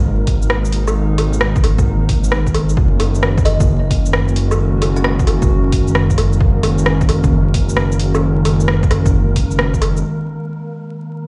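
A warbling, nostalgic pad opens this ghostly, melancholic future garage excerpt, holding sustained chords that pump against the sidechain, with a dark detuned sawtooth bass rumbling up front and a breathy, wind-like tuned noise layer drifting in the background. The electronic kick arrives almost at once, punchy and overdriven, beside a layered deep house kit of hi-hat, rim click, shaker and woodblock, all moving at 132 BPM in 4/4 with a 66% swing on the sixteenths and tuned to A4 = 439 Hz. The harmony settles on G#madd9 before shifting to F#69, and between 3.5 and 5.1 seconds a woody, hollow kalimba plucks a short figure through tape echo, tucked back in the mix. By 10.0 seconds the bass and drums drop away, leaving the lo-fi pad, now under a filter sweep, and the airy noise to return to G#madd9. The whole sounds as if played on a big system in a bare room, soaked in large studio reverb with vinyl crackle and a dulled top end.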